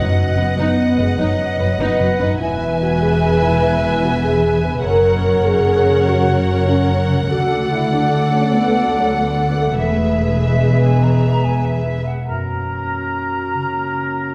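Set in a straight, lilting 12/8 at 98 dotted-quarter beats per minute, this adventurous, triumphant cinematic passage in F# mixolydian opens on a brief hard-mallet timpani hit, dry and articulate, beneath the full ensemble. A lush bowed violin section carries the smooth vibrato melody while a second violin line, the close, focused violas, and a mellow French horn section holding sustained chords fill out the middle, the horns sitting highest in the mix. A bright, airy silver flute and a dark, soft-attacked clarinet trace supporting lines above and within the strings, as a ringing, thumb-plucked harp spins arpeggios in the background. Woody double basses and expressive cellos anchor the bass through a progression moving from B/F# through E, F#, D and E. By 12.3 s the strings, horns and low voices have fallen away, and a clear, distant oboe enters up front on a lone note to join the flute, clarinet and harp, landing on F# as the passage is cut off at 14.3 s, all of it bathed in a resonant recital-hall reverb.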